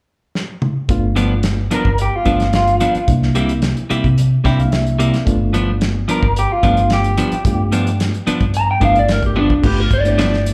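Rollicking and laid-back, this straight-eighth soul blues excerpt in G mixolydian moves at 110 BPM over a live club sound, where a dry, up-front drum kit with dark cymbals and a tight kick opens with a fill before a round, foam-muted electric bass, a reedy electric piano with fast tremolo and slapback echo, and compressed clean guitar stabs join, while a slightly broken-up, lo-fi lead guitar carries the melody over G7 and C7 changes until a punchy horn section slips in behind at 9.6 seconds.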